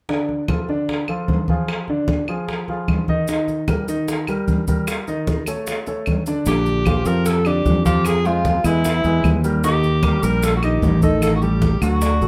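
An excerpt of danceable, sophisticated Afro-Cuban jazz at 151 BPM opens at 0.1 seconds with a polished, present grand piano comping through a Dm to Eb progression, over bright, low-tuned congas and tight, high-tuned bongos struck with hard hands in a large room, joined almost at once by woody, dry claves. Grainy, mellow maracas slip in at 3.3 seconds. At 6.5 seconds a growly, up-front fretless electric bass and a distant, roomy alto saxophone with jazz vibrato arrive together, the warm sax taking the solo melody as the harmony moves through Bb6, Fm and E before settling on Dadd11/A.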